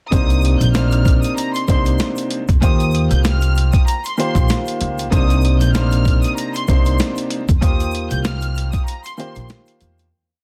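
A laid-back boom-bap hip-hop groove at 96 BPM with a light sixteenth-note swing carries this dark, moody C minor piece, where thumpy, gritty sampler-style drums with sixteenth-note hats and a woody pizzicato upright bass sit up front, bending into its deep looped line with slides and chromatic approach notes, beneath chopped, cassette-tinged upright piano chords and a short, vibrato-rich bowed violin section melody, both repeated like sampled loops, while a grainy egg shaker ticks in the background over Cm7 and Eb6 changes, all in a dense, dry, vinyl-crackled master that fades out from 7.6 seconds into a break at 8.9 seconds.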